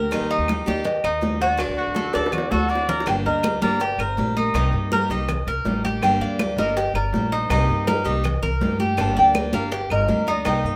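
An up-front Cuban tres plays metallic, double-string arpeggios through this danceable, nostalgic stretch of Cuban son and guajira at 162 BPM in G minor. A dark, thumb-plucked nylon-string guitar carries the melody over a bright, picked steel-string guitar with audible finger squeak, a woody pizzicato upright bass and thick-skinned, high-tuned congas, while tight bongos and claves sit in the background. A clear trumpet with vibrato adds a brief second line from 1.8 to 3.1 seconds, overlapping a drum fill, before the harmony settles into alternating G minor and C minor seventh under light reverb.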